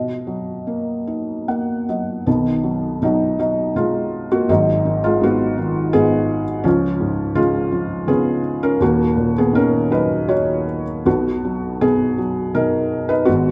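A felt-muted upright piano, soft, mellow and intimate, sits up front throughout this calm, peaceful fragment of lyrical classical solo piano in B lydian, moving at 82 BPM in 3/4 with a loose, rubato feel and tuned to A4 = 443 Hz. Spanning D#1 to F#5, the piano adds a brief fill from 1.1 to 2.3 seconds before the opening phrase returns, drifting through chords such as Bmaj7, G#m7, C#7 and D#m7 before settling on B6. A moderate recital hall reverb gives the smooth, vintage tone a gentle sense of space.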